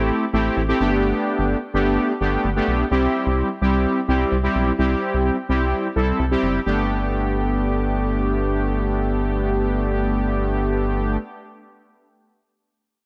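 Upbeat and bright, this synth-pop clip from a longer piece moves at 128 BPM in a straight 4/4 in G major, tuned slightly low to A4 = 439 Hz. An analog synth brass carries the accompaniment from the first moment to 11.2 s, with a bold, fat, detuned sawtooth tone shaped by a filter sweep, vibrato and chorus, sitting up front between G3 and A4. Beneath it, a rubbery square bass plays through the same span in a low, dark register, its hollow, bouncy filter pluck giving each note a resonant snap. The harmony moves from Am7 to Gadd9 and then C, before a new section at 6.7 s returns to Gadd9. Light reverb and a digital ambience frame the parts.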